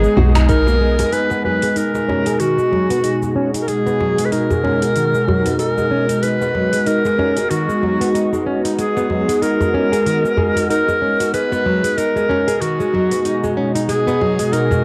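A home cassette recording with a moderate spring reverb gives this hypnotic, organic downtempo excerpt its homespun glow, with a swung sixteenth-note feel. A breathy, close-miked clarinet carries an up-front, jazz-style solo melody with vibrato over a tense, detuned, string-like drone pumping with sidechain, while fingerpicked classical nylon-string guitar arpeggios pass through tape echo and a filter sweep from 1.1 seconds. A distant djembe played with hard hands and an overdriven deep house kit of cabasa, finger snaps, metallic hi-hat and woodblock run from the start. A round, woody FM bass and a faint, overdriven electronic kick sound only in the opening second, and after that a very quiet, dark bronze singing bowl rings in.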